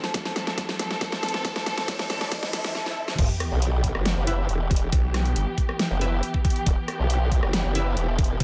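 Dark, lush bowed strings with vibrato hold sustained, pumping chords over a knocking, overdriven electronic kick and a dubstep kit with a huge snare and bright hats. Meanwhile, a background riser, swell and sub drop build toward the drop at 3.2 seconds in this aggressive, heavy half-time wobble dubstep excerpt in E minor at 138 BPM. There a detuned, formant-sweep wobble bass arrives up front, joined by a growling, saturated sawtooth bass in short bursts from 4.9 seconds and a bold, punchy orchestra-hit-like synth stab with its own reverb and delay sitting in the background.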